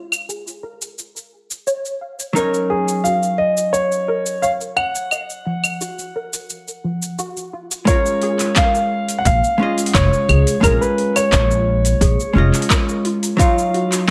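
A relaxed sunset chillout excerpt at 87 BPM opens on a clean, dark hollow-body jazz guitar comping alongside soft, round, detuned synth-pluck arpeggios washed in chorus and tape echo, while an overdriven deep house kit of cabasa, claves, handclaps and metallic hi-hats sets a straight 4/4 groove over A#m7 and D#m9 chords. A mellow, smooth baby grand piano carries the melody from 2.4 seconds, up front with digital delay, and a deep, gritty electronic kick joins at 7.9 seconds. A woody, thumpy pizzicato upright bass surfaces briefly from 9.3 seconds, all within light reverb.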